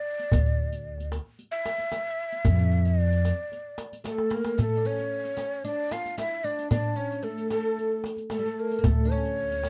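A breathy, hollow ney carries the melody from the start, its end-blown reed tone up front with vibrato and a crisp attack, over a longing, melancholic Arabic maqam ensemble piece in D maqam nahawand at 113 BPM in a straight 4/4. A clay-shelled darbuka and a riq with dark jingles keep time from a small room, while a thumpy, gut-strung upright bass plays pizzicato from 0.3 to 3.3 seconds and returns near the close. As a drum fill begins at 4.0 seconds, a woody, fretless oud enters as a second line, its plectrum-plucked double strings adding depth to a dark, dry production in this excerpt from a longer piece.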